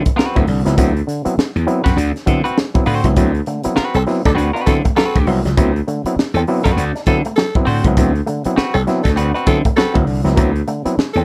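Over swung sixteenths at 100 BPM in 4/4, this energetic funk clip centres on a D13 chord, with a punchy, high-tuned fusion drum kit pumping in a small room, an overdriven slap bass growling up front, an auto-wah clav adding stringy, driven stabs, and a bright, compressed semi-hollow guitar comping cleanly, before a twangy envelope-filtered guitar riff with tremolo enters at 3.2 seconds and a raspy, breathy tenor saxophone joins at 3.9 seconds with scooped, growling jazz-style notes, all kept dry.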